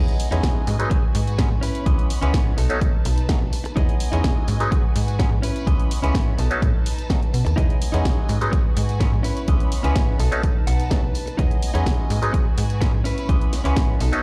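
A bright, twangy clav, a smooth bowed violin section, a clean picked electric guitar and a snappy FM bass all start together at 0.0 seconds in this sunny, joyful excerpt of filtered disco house in E major, moving at 126 BPM in a straight 4/4. The house drum kit follows almost at once with hi-hat and a cracking, layered snare, then a very quiet, close and dry tambourine, and a punchy, tape-warm analog kick sits up front from 0.4 seconds. The harmony cycles through Emaj7, G#m7, C#m7 and B7. The clav's percussive, stringy accompaniment passes through a phaser. The violin ensemble holds rich, distant sustained chords with vibrato. The direct-recorded guitar plays a compressed riff roughened by vintage 12-bit sampler grit, and it adds a fill at 10.4 seconds, while the metallic-edged, fast-attacking, decaying FM bass drives the low end. The clav, violins, guitar and bass all pump against the kick and sit behind a low-pass filter, and the whole mix sounds as if played over a big sound system in a bare room with a large studio reverb.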